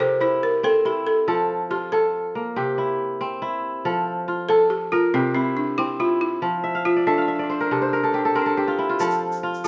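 West African traditional string and xylophone music in a flowing 12/8, where a woody, buzzing balafon struck with hard rubber mallets carries the melody over mellow, ringing kora arpeggios that add a fill from 6.6 seconds, before a grainy tube shaker enters at 9.0 seconds, all set in a moderate recital hall reverb in this short cut from a longer piece.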